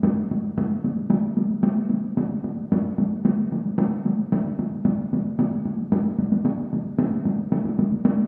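The recording has a wet, cavernous sound, like a large scoring stage with a 1.7-second reverb tail, heard from further back in the room and carrying a smear of lossy compression artefacts. Within that space, a taiko ensemble sits up front, its acoustic drums struck with hard sticks for a sharp, percussive attack that blooms into the live room. The music is Japanese traditional drumming in 4/4 at 112 BPM with a straight feel, and the mood is driving and powerful. The ensemble plays from the very start through 8.2 seconds, with a new passage arriving at 7.0 seconds. Cut from a longer piece, this short fragment gives a brief, forceful glimpse of the full performance.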